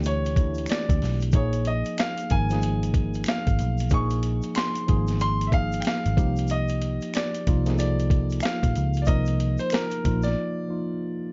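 A gritty, compressed boom bap sampler-style drum kit sits up front with a thumpy kick, a high-tuned snare and hi-hat, paired with a round, punchy, foam-muted electric bass in this soulful, late-night neo-soul R&B groove with a swung sixteenth-note feel. A worn, slightly out-of-tune tine electric piano, lightly overdriven through a combo amp, carries the chords under a clear, natural grand piano melody, while a tube shaker and finger snaps sit close and dry in the background. The mix is dark and nearly reverb-free, and the drums, bass and percussion drop out around 10.4 seconds, leaving the two pianos alone in a brief break until the excerpt is cut off at 11.3 seconds.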